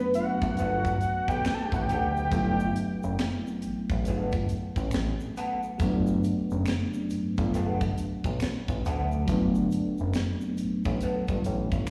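This smooth neo-soul and R&B excerpt opens with a fat, warbling analog lead carrying the melody over a mellow FM electric piano, which plays a Gmaj9 chord in a round, dark, soft tone with chorus. The vintage-sounding lead, with vibrato, a sub octave, chorus, and tape and slapback echo, is heard only until 3.1 seconds, after which the rest of the band carries on in 4/4 with swung sixteenths. The tight funk drum kit is dry and polished, with a high-tuned snare, hi-hat and a tight kick set up front, while egg shaker and finger snaps sit close and quiet in the background. A thick, nasal analog bass with a plucky filter stays prominent beneath, and from 0.6 seconds an electric guitar through a small old amp adds a slightly broken-up, lo-fi second line with wah. The recording has the feel of a live gig heard through the venue's PA, with recital-hall ambience, light reverb and a layer of vinyl crackle.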